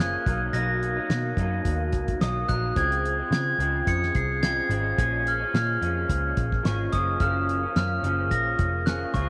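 A mellow, bell-like glockenspiel played with rubber mallets carries the melody up front in lush chorus and tape echo, over a slightly broken-up, lo-fi electric guitar with analog chorus and vibrato, a round, foam-muted picked bass and a cloth-damped, thuddy drum kit with a fat snare and tight kick, giving this dreamy, hazy bedroom-pop excerpt at 108 BPM a lightly swung 4/4 feel and a small-room ambience as the chords move from Cbmaj7 through Dbmaj7 and Bbm7 to Gbmaj7.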